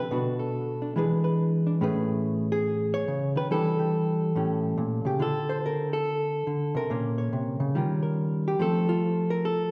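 A lilting swing in four drives this short piece of solo jazz guitar, its eighth notes leaning into a relaxed, uneven pulse. The mood is swinging and warm, carried by a single electric hollow-body guitar played with the fingers and set up front. Its tone is dark and clean, with a compressed evenness, and it ranges from A2 up to C#5. The harmony moves from Bm7 and E7 to Amaj9, passes through A7sus4/E and A7 to Dm7, then shifts to Bbm and Eb9 before arriving at F. A reverberant recital-hall ambience, as heard in a church or concert hall, surrounds the guitar with a lingering tail. The passage lasts 9.7 seconds and is cut from a longer performance.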